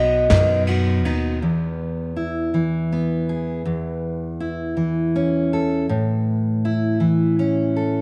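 This pastoral, peaceful acoustic folk fragment opens on a B chord with a bright, fresh-stringed picked guitar melody touching D#5, a full-bodied fingerpicked jumbo guitar with audible finger squeak, and a woody pizzicato upright bass, joined at 0.3 s by a dark, smooth brushed kit with a tight kick. In a gentle 6/8 at 54 BPM, the melody guitar falls away by 0.6 s and the bass by 1.4 s. From there the up-front fingerpicked guitar carries on alone through E, C#m/E and A chords, set in a moderate echo-chamber reverb.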